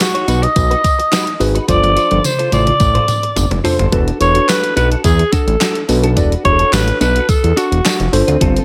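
A growling alto saxophone leads this early-eighties boogie funk excerpt, its breathy, raspy tone carrying vibrato and a slapback echo as it sits up front with the melody. Beneath it, a fat analog bass enters at 0.3 seconds with a thick, detuned sawtooth sound and fast attack, while a crisp 8-bit drum machine supplies a thumpy kick, fat snare, handclaps, hi-hat and toms, all bathed in gated reverb, with a drum fill running from 1.7 to 3.9 seconds. A mellow, slightly out-of-tune tine electric piano fills in the harmony on suspended ninth chords, and a clean, compressed electric guitar plays a fingered riff colored by analog chorus. A jingly tambourine sits close but in the background, adding shimmer until 8.3 seconds. The straight 4/4 groove feels funky and danceable, and the short cut moves from its opening section into a second one at 3.9 seconds under light digital ambience.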